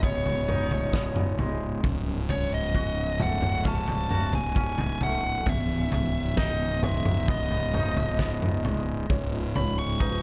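A dark, warm production sits in a small room, giving this brief post-rock passage a melancholic, brooding air in a straight 4/4. A nasal lead guitar with a parked wah carries the melody between C#5 and C#6, its overdriven, picked tone trailed by slapback echo. Beneath it, a twangy, scooped electric guitar plays clean fingered arpeggios through tremolo and slapback echo, while a fuzz-laden fingered bass sits up front on a low C#1. A loose indie drum kit fills the room with a punchy kick, a fat snare and toms, and its pumping room sound is the loudest of the parts. The chords move from C#sus2 through F#m/C# to C#m9, and at 9.1 seconds a soft, felt-muted upright piano slips in behind with mellow, short-sustained arpeggios and a touch of slapback echo.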